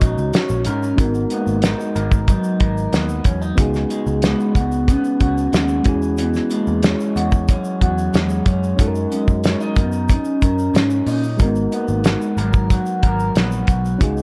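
A dark, hazy small-room sound frames this wistful slice of indie bedroom pop, cut from a longer piece and moving in a straight, unhurried 4/4. Up front sits a cloth-damped drum kit with a fat snare, tight kick, hi-hat and a rolled-off top, while a vintage muted picked bass supplies a round, punchy, foam-muted low end. A bright, twangy electric guitar through a small old amp, slightly broken-up and carrying subtle chorus and a warbly pitch drift, shares the accompaniment with a reedy, clean electric piano that has a cassette-tape colour. Over them a nostalgic lead of detuned triangle and sawtooth tones, with a fast attack and long sustain, sings the melody through tremolo, vibrato, subtle chorus and analog delay. A grainy tube shaker sits far in the background, and the harmony drifts through lush extended chords such as G#m9, C#7sus4 and E69 for a gently hazy, homemade mood.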